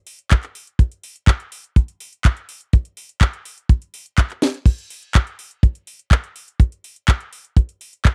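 An up-front acoustic kick drum, dry and tight with a rolled-off top, drives this romantic, danceable italo disco excerpt in a straight 4/4. Behind it, from 0.1 seconds, a layered electronic house kit adds crash cymbal, handclaps, metallic hi-hats and a cracking snare, its tape-warm tone sounding re-recorded in a small room. A drum fill arrives at 4.4 seconds, and the whole passage has the close, dry feel of a 1970s studio.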